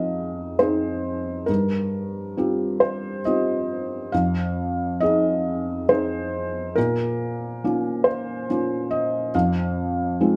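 A rubato 3/4 pulse around 69 BPM carries this intimate, melancholic fragment of neoclassical minimalist piano in F minor, tuned to A4 = 444 Hz. A felt-muted upright piano plays solo throughout its 10.4 seconds, soft and mellow and sitting up front, spanning F2 to F5 as the harmony moves from Fm7 through Csus4/G and Bbm before settling on Fm at 9.3 seconds. A moderate studio reverb gives the room a gentle halo.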